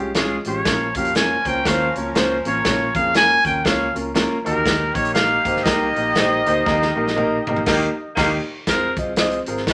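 Heard in a moderate studio reverb, this urgent, driving uptempo 1960s-style soul at 120 BPM with a swung feel puts a clear trumpet melody with light vibrato up front from 0.5 s, over an intimate grand piano with audible action noise, a dark, round foam-muted electric bass, a punchy natural drum kit whose fill overlaps a band accent, and a distant, roomy horn section in the background that stops at 8.3 s before the trumpet takes a short solo at 8.7 s.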